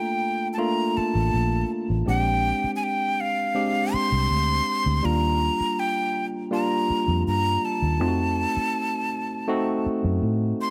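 Set in a small room with light reverb, this silky, cinematic slice of lush 1970s-style soul features a breathy, bright jazz flute carrying the melody with vibrato and a crisp, chiffy attack up front, a barky, clean tine electric piano through a combo amp providing accompaniment over rich chords from Gm9 to F7b9, and a dark, round, foam-muted fingered electric bass that joins at 1.0 seconds.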